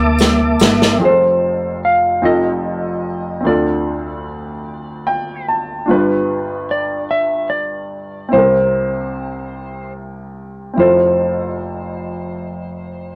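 Slow, soulful and jubilant gospel in 6/8 at 49 BPM in F major, cut from a longer piece, opens with a brief burst of mellow tonewheel organ through a fast rotary speaker, round hollow-body electric bass, a roomy snare fill and a very quiet jingly tambourine, all gone by 1.0 s, after which a dark, clean lap steel guitar carries the slide melody over a clear, worn grand piano that adds its own fill around 4.7 s, moving through F7, Dm7, G7 and C7 to Fmaj7 in a rough rehearsal-room sound with light reverb and saturation.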